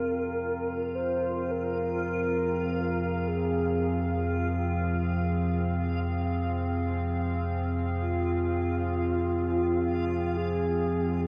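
A mellow, horn-like synth lead with a round, warbling vintage tone carries a melody in F minor through chorus and delay, floating in free time over this cavernous, desolate dark ambient drone. Beneath it, a deep, rumbling drone with an ominous, detuned edge sits up front, shaped by a filter sweep across the whole 11.3 seconds, while a moody, wave-folded analog pad holds sustained chords and a reversed granular texture swells dreamily. The fragment, cut from a longer piece, is bathed in a huge, wet reverb and carries the character of cassette tape.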